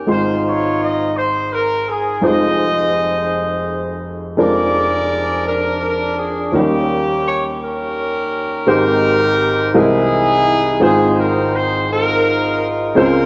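In a slow 6/8 at 56 dotted-quarter beats per minute with a straight feel, this reverent, soulful gospel fragment in Ab major, tuned slightly flat to A4 = 437 Hz, is cut from a longer piece. A loose, roomy, pop-style horn section carries the melody up front, while a woody upright piano supplies warm accompaniment spanning F1 to C6, and both play throughout the 13.3 seconds. The harmony moves from Ab6 through Fm7 and Eb7 before shifting at 8.7 s to Abmaj7 and an altered C7, all bathed in a dreamy plate reverb with a 2.5-second decay and a soft, dark top end that rolls off above 7.8 kHz.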